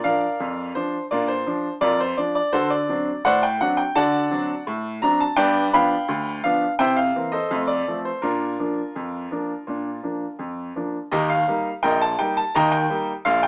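A bright, woody upright piano plays alone from the start in this lively, cheerful ragtime excerpt, moving in a straight two-beat metre and ranging from deep bass notes up into the high treble. Its harmony travels from the home chord through a chain of seventh chords before settling back, and a new section begins at 11.1 seconds on a fresh chord. The piano sits up front with an open tone in a moderate studio reverb, while the whole recording has a small-speaker sound.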